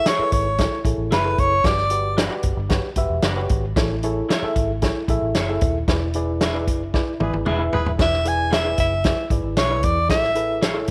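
Uptempo 1960s-style soul with a joyful glow: a clear, close-miked soprano saxophone melody rides over a reedy, worn electric piano with fast tremolo, twangy, slightly broken-up guitar stabs, a punchy, up-front vintage drum kit and a round, foam-muted fingered bass, while a band accent from 5.9 seconds leads into a brief smooth-topped horn section line at 7.2 seconds and the saxophone's return at 8.0 seconds, the whole set inside a moderate echo chamber reverb with small room ambience.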